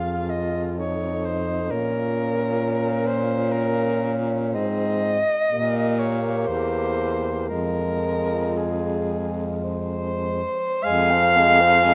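A saxophone quartet begins together in F minor, the soprano carrying a melancholic, yearning melody with vibrato and a soft attack, close and up front, over a warm alto second line with light vibrato and a tenor accompaniment with vibrato and a vintage colour. Beneath them a clear baritone, also up front, holds the bass with vibrato, the four moving in a lyrical classical style through a rubato 3/4 at 47-68 BPM, passing from Fm and F7 to Bbm and returning to Fm at 7.5 seconds. This roughly 12-second fragment of a longer piece sits in a moderate recital hall reverb, with lossy compression artefacts audible.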